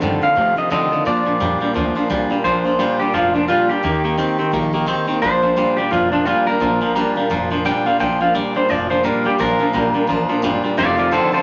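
A rollicking, rowdy rockabilly passage opens on a swung beat, with a picked steel-string acoustic guitar giving roomy accompaniment, a compressed, twangy electric guitar riff up front, and a woody, growly pizzicato upright bass underneath. At 0.2 s a slightly broken-up, lo-fi electric guitar through a small old amp takes the fingered melody. From 2.4 s a clean electric guitar solo runs on through moderate studio reverb as the chords move between F7, Bb and Eb.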